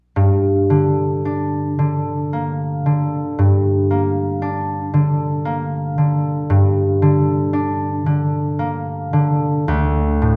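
In a flexible, rubato three-beat lilt, this elegiac, solemn classical excerpt features a concert harp, fingerpicked, ringing and up front, carrying the low accompaniment from 0.2 s to 10.4 s, resting on a minor harmony before shifting to a bare open chord at 9.7 s, all within a reverberant recital hall marked by a faint mains hum.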